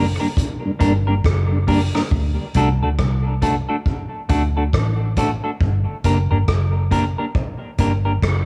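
A swung sixteenth-note feel at 69 BPM in 4/4 sets up this deep, meditative dub reggae fragment in G harmonic minor, moving from Gm to D at 2.1 seconds and back to Gm at 5.6 seconds. A dark, round, foam-muted vintage bass sits up front alongside a picked clean electric guitar treated with dub echo, while a mellow tonewheel organ with chorus vibrato, key click and slow rotary speaker drifts in the background until 2.0 seconds. From 0.4 seconds a distant, roomy vintage kit adds hi-hat, rim click and a punchy kick with a rolled-off top, all framed by light small-room studio reverb.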